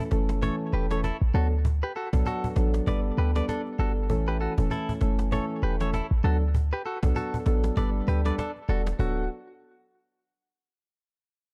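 Dark, dry production frames this joyful, breezy afrobeats clip at 98 BPM in D major, where a deep, boomy 808-style bass sits up front, a snappy, close cajon keeps a swung pulse, soft, round electric-piano-like synth keys with chorus and a filter sweep move through A, D6 and Gadd9, and a bright, twangy, picked clean electric guitar riff rings out through tape echo.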